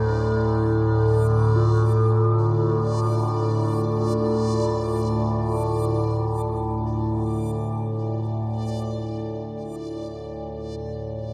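Desolate and unsettling, this free-time ambient fragment in D minor rests on an up-front, wave-folded sawtooth-and-sine drone whose resonant overtones shift beneath chorus and phaser, while a bright, reversed granular texture swells high above and a metallic bronze singing bowl with a suede striker rings softly in the background through tape echo until 8.7 seconds, all bathed in a huge, dark reverb before a fade-out beginning at 5.5 seconds.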